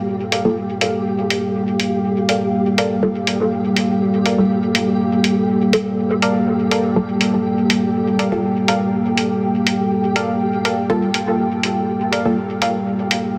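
Nocturnal and hazy, this dub techno fragment is anchored by a dark, detuned analog pad with a sub octave and chorus, sustaining a Gm9 chord up front while a flickering, grainy granular texture glows softly beneath it. Two muted, filtered dub chord stabs circle through dub echo: a nasal, resonant one with phaser and a moving notch sits in the background, and a deep, mellow one carries chorus, with a filter sweep running across the stab throughout. A compressed, pitched-down electronic hi-hat with a muffled, tape-like tone keeps time at the front, all bathed in a huge ambient reverb under a dense, heavily limited master.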